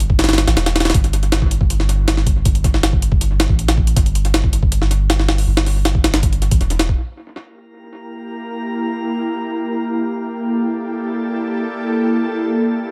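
Drum and bass with a jungle flavour, this fragment of a longer piece feels frenetic yet nostalgic, in a straight 4/4 with an echo-heavy mix and a moderate spring reverb. For the first 7.0 seconds a sampler-style jungle drum kit sits up front, compressed, pitched up and gritty, with a thumpy kick, a high-tuned snare, hi-hat, tape-warm colour, studio ambience and analog delay. Beneath it, a soft dub sub bass holds deep, round, sustained tones with a fast attack. Those two parts then stop, and a Gm69 chord takes over as a drifting glass-harmonics texture fades in at 7.9 seconds, calm and sine-pure, its overtones wandering through chorus and reverb. An ethereal, airy pad follows shortly after with slow-blooming, detuned unison chords, mellow beneath its ensemble chorus and long release, and the two float together until the close.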